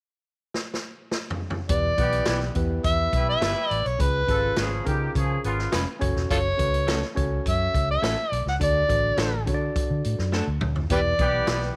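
A small-room recording puts the gritty, overdriven harmonica up front in this passionate, urgent slice of uptempo 1960s-style soul, set at 104 BPM in E dorian. A swinging big-band drum kit with a boomy kick opens with a fill before the harmonica takes the melody at 1.7 seconds, with scooped notes and tongue slaps over dark, foam-muted fingered electric bass, a worn, slightly out-of-tune tine electric piano and a tight, clear horn section on the second line. A twangy, slightly broken-up guitar adds spring-reverbed stabs in the background, and very quiet, high-tuned congas slip in at 10.9 seconds as the chords move from Em through C#7, F#m and D back to Em.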